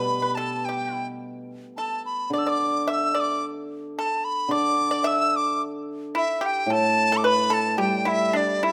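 Played rubato in 4/4 at a nominal 109 BPM, this short cut from a longer traditional Chinese chamber piece in the D zhi mode has a pastoral, graceful mood. The bamboo dizi carries the melody from 0.0 to 8.7 seconds. It sits up front, close-miked, with a pure, buzzing-membrane tone, vibrato and tongued notes. Beneath it, the pipa plays a second line in a lower register, its fingerpicked sound acoustic, dry and percussive. The hammered dulcimer supplies the low accompaniment with a shimmering, ringing resonance. Close, detailed microphones capture the ensemble in a moderate recital hall, whose reverb lends a gentle sense of space.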